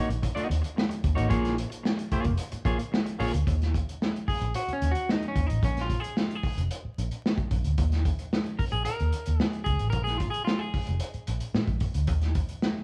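Lightly reverberant and dusted with vinyl crackle, this cool, funky 111 BPM piece in Eb minor is cut from a longer performance by a band playing live in one room, with a bright, picked semi-hollow electric guitar up front over a dark, round, foam-muted fingered bass and a muffled, lo-fi vintage drum kit with a tight kick and medium-tuned snare, the harmony moving from Ebm7 and Bbm7 to Eb5 and Bb5 as a clean electric guitar solo runs from 3.5 seconds.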